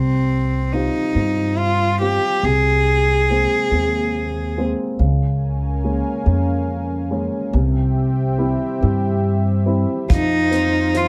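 Acoustic folk-pop ballad in 6/8 with a melancholic, heartbroken mood, taken from a longer piece. A single bowed cello carries the melody up front, played sul tasto with light vibrato, a soft attack and an airy, intimate tone; it sings until 4.6 seconds and returns near the end at 10.1 seconds. Beneath it, a woody upright piano provides accompaniment throughout, while a pizzicato upright bass with steel strings adds a thumpy, up-front low end. From 5.4 seconds a mellow, detuned sawtooth analog pad with chorus enters on slow-attack sustained chords, and at 10.1 seconds a loose indie drum kit joins with hi-hat and a tight kick drum, its top rolled off and its sound caught in a small room. Light reverb wraps the ensemble, and the harmony moves from Csus4 through Abadd9/C and Bbm7/Db to C before landing on F5.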